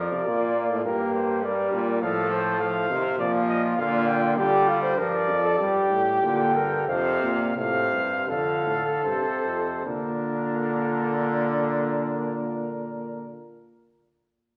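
A classical imitative canzona for brass ensemble in Bb major, stately and elegant, moving in 4/4 at a tempo between 72 and 103 BPM and cut from a longer piece. A dark cornet carries the melody between Bb4 and G5, sitting up front with light vibrato, while a mellow flugelhorn sings a second line beneath it. A bright trombone supplies the accompaniment, and a bright bass trombone, also up front, anchors the bass from F2 to D3, all four playing throughout the 13.4 seconds. The harmony opens on Bb/F and passes through Gm, Dm and a suspended Fsus4 before settling on F. The pace slows from 3.2 to 9.9 seconds, where a new section begins on Bb. The ensemble is heard from further back in a recital hall whose reverb lends a roomy, distant glow.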